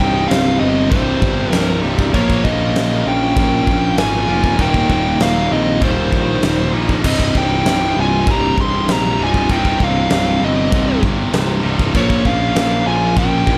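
A straight 4/4 heavy metal groove drives this relentless, heavy excerpt: a big rock drum kit with a fat snare, tight kick, china and crash cymbals rings in a bright stone room beneath a growly fuzz picked electric bass, while a high-gain distorted guitar and a tight distorted guitar, both double-tracked, grind out riffs in the background, and a dark high-gain lead guitar carries the melody over a bluesy overdriven lead guitar's second line as the chords move from Cm through Bbm and Eb to Cm and Bbm, with studio reverb around the mix.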